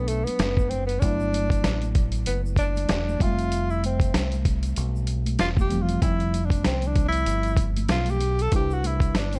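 Dry and coated in vinyl crackle, this cool, relaxed jazz-hop excerpt at 96 BPM with a swung 16th feel puts a mellow tenor saxophone solo up front, its subtone, vibrato and scooped notes riding over a dark, round fingered electric bass and a gritty, compressed sampler-style drum kit with a thumpy kick, while a worn, slightly out-of-tune tine electric piano with subtle chorus and soft-handed shaker and congas sit in the background as the chords move from Gmaj9 to Fmaj9 at 3.2 seconds and Cmaj9 at 8.5 seconds.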